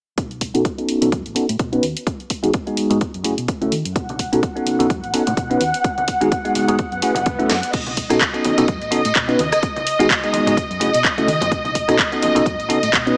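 Filtered disco house with a sunny, feel-good lift, built on a punchy up-front electronic kick, a house kit with cracking snare, handclaps, rim clicks, hats and crash, and a dark, round hollow-body electric bass, all under a filter sweep and steady sidechain pumping. A bell-like, clean tine electric piano carries the chords through a phaser, while a smooth bowed violin section with light vibrato and soft-handed tambourine and congas join at 4.0 seconds. A background electronic swell and a drum fill lead into the next section at 7.7 seconds, and the moderate echo-chamber reverb and small-speaker sound colour the whole cut.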